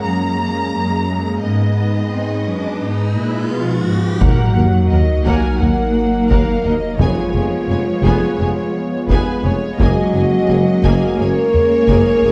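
This is a dark, wet recording with a scoring-stage reverb, a brooding, futuristic passage cut from a longer hybrid orchestral and electronic film score in Eb minor, moving at a steady 86 BPM in 4/4. From the opening, a warm violin section carries the melody with vibrato and a soft attack, over a background bed of rich violas, a detuned sawtooth analog pad thickened by chorus, and a focused, close cello section holding the bass. An electronic riser climbs from 1.6 seconds, and a sub drop lands with the impact at 4.2 seconds, where the full weight arrives. A dark French horn section has already entered at 3.5 seconds with smooth sustained chords. At 4.2 seconds, a distant second violin line joins, while a mellow, punchy tuba and a background double bass section deepen the low end and a close, dry taiko ensemble struck with hard sticks drives underneath. The harmony moves through Gbadd9, Abm, Ebm and Fdim before returning to Gbadd9, keeping the mood shadowed and unresolved.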